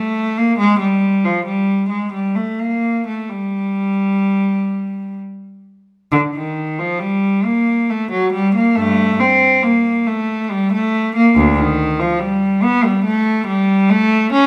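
In a slow, rubato 3/4 at 63-72 BPM, this solemn, grave baroque-style suite movement in G minor is carried by a single bowed cello, played up front in period style with a rich, reedy gut-string tone ranging from D2 to C#4. The opening phrase returns at 6.1 s, and the cello plays alone from start to finish of this 14.5-second cut from a longer piece, set in a wet stone room reverb.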